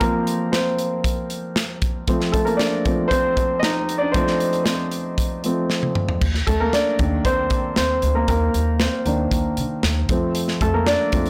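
A present, polished grand piano leads this uplifting piano-driven pop excerpt in a straight 4/4, moving through Bbsus2, F and Cm7 harmonies over an airy, up-front acoustic drum kit with a punchy kick and a medium-tuned snare. After a drum fill at 5.7 seconds, a woody, thumpy pizzicato upright bass with gut strings enters at 6.2 seconds and adds a dark low end. The recording sits in a moderate studio reverb and sounds blown-out and overdriven.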